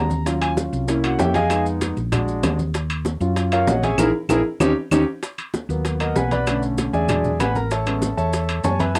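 An intimate concert grand piano with audible action noise, deep bass and long sustain takes the solo throughout this sultry, sophisticated Afro-Cuban jazz excerpt in Eb minor at 193 BPM, its polished tone colored by cassette tape as it moves through chords like Ebm7, C7b9 and Bb7b13 before shifting to G#m9, Bm7, E9 and Amaj9. Up front beside it, a dark, round, amped hollow-body short-scale electric bass anchors the low end, while close, dry bongos and ringing congas sit in the background with soft hands, joined by metal-shell timbales, woody claves and grainy, mellow maracas with a vintage, band-limited character. The band hits an accent from 4.0 to 5.2 seconds, capped by a drum fill at 4.6 seconds, all in a moderate booth ambience with the intimacy of a home cassette recording.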